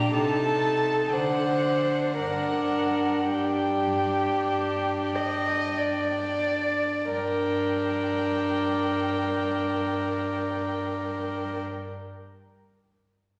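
Classical slow romantic movement for string quartet in G minor, melancholic and solemn, moving at 44-64 BPM in 4/4 with rubato and slowing down through the first 7.1 seconds, as a rich, airy first violin sings the melody with light vibrato above a dark, up-front second violin line, a pure, floating viola accompaniment and an intimate cello bass, all four bowed sul tasto with soft attacks and bathed in concert hall reverb, in a passage cut from a longer piece.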